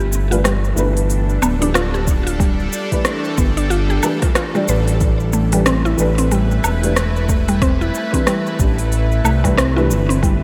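A woody, round mallet-like synth pluck spins arpeggios through chorus, digital delay and shimmer reverb over a smooth, up-front sawtooth bass, while a detuned, string-like drone with phaser and vibrato sustains tense chords beneath, moving from G7 to Am9 in this hypnotic, meditative organic downtempo piece in A minor at 92 BPM. A felt-muted upright piano adds soft, intimate accompaniment with audible action noise, and a deep house kit of cabasa, smooth hi-hat, rim click and woodblock under gated reverb carries a swung feel, joined by an overdriven electronic kick at 2.1 seconds. The bright 1980s-style digital production sits in a lush hall reverb, with sidechain pumping on the bass, drone and piano.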